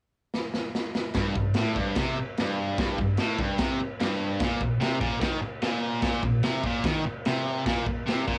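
A straight 4/4 pulse at 147 BPM in G minor drives this menacing, raw garage rock excerpt, opening with a drum fill from 0.3 to 1.2 seconds on a gritty, saturated kit of punchy kick, medium-tuned snare, dark crash cymbal and a pumping small-room sound with a rolled-off top. At 1.2 seconds a bright, overdriven stack guitar joins up front, its picked, double-tracked riff sitting low between G2 and Eb3. Cassette tape gives the home recording its worn character, with light reverb around both parts.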